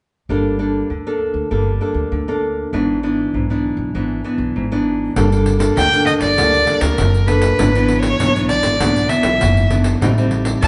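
A rich, smooth bowed violin with vibrato sits up front and carries the melody from 5.8 seconds in this bittersweet yet lively samba and choro piece, cut from a longer performance. Underneath, a fingerpicked classical nylon-string guitar, also up front, and a woody, thumpy pizzicato upright bass move between Gmadd9 and E7/G#, while a jingly, saturated pandeiro played with hard hands joins at 5.2 seconds. The band plays live together in one room, bathed in a large, wet studio reverb with a rounded, dark-topped sound.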